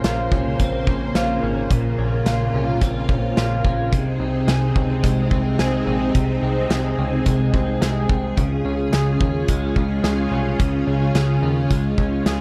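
A dark, moderately reverberant mix with a plate tail and small-room ambience frames this hazy, haunting dream pop excerpt in a straight 4/4, cut from a longer piece and lasting 12.4 seconds. Up front, a vintage string machine voiced as violins holds shimmering, full-bodied sustained chords with a soft attack and ensemble chorus. Beside it, an electric guitar at the edge of break-up plays picked, compressed arpeggios with a slightly broken-up tone, coloured by analog chorus and slapback echo. Underneath, a plucky analog bass blends sawtooth and square waves with ring modulation and a filter pluck with a fast attack for a punchy, funky low end, while a loose acoustic indie drum kit with a pumping room sound plays hi-hat, a medium-tuned snare and kick drum. The harmony moves from Bbmadd9 to Ab and then Db, with every part sounding throughout the passage.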